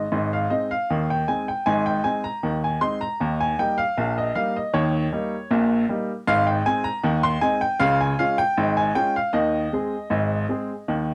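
A clear, woody upright piano opens this lively, cheerful ragtime fragment, playing solo in a straight two-beat feel and ranging from deep bass notes up into the bright upper register. Its tone sits up front with a cassette-tape character, set in a moderate studio reverb that gives the home recording a small sense of space. The harmony moves from the home chord through a dominant seventh and a brief turn to the four chord before settling back, and the passage ends at 11.1 seconds, cut from a longer piece.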